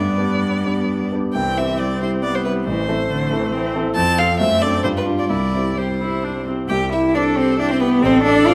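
In 3/4 at roughly 125-140 BPM, this quick classical-period movement for piano quartet moves with a flexible, rubato pulse, lively and graceful in mood. The violin carries the melody up front with a focused, vibrato-rich bowed tone. The cello, close and clear, sings a second line beneath it. The viola fills in the accompaniment with a smooth, even sound, and the concert grand supports it with a deep bass and a mellow, vintage character. All four play together from start to finish of this short cut from a longer work, in C major, with the harmony settling onto the home chord around 5.3 seconds before a new passage begins at 6.7 seconds. Close, detailed microphones capture the players within a moderate recital-hall reverb.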